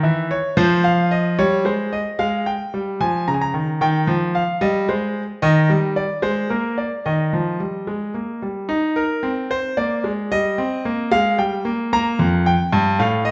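Classical, baroque-style two-part invention for solo grand piano in a straight 3/4, joyful and elegant, cut from a longer piece. The concert grand sits up front with a clear, smooth tone, a deep bass and a slightly vintage character, ranging from F2 to Bb5 as its lines move from a minor opening into a brighter major turn around 5.4 seconds. A wet recital hall reverb lends the counterpoint a soft, rounded halo, with the top end gently rolled off.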